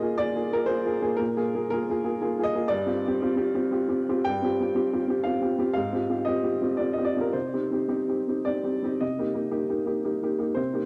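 Intimate and melancholic, this short neoclassical minimalist piano fragment, cut from a longer piece, unfolds in 3/4 at a rubato pace drifting between 106 and 121 BPM in C minor. A single upright piano carries everything from 0.0 to 10.9 seconds, ranging from G2 to G5 with a woody, boxy character, short sustain and an up-front placement, coloured by tape echo. The harmony moves through Bb7sus4, G7sus4 and Fsus2 before settling on Cm at 7.3 seconds, and the opening material returns at 9.0 seconds over Cm7. A wet studio reverb with a 0.6-second decay surrounds the piano, and the cassette-based home recording lends the sound a close, private quality.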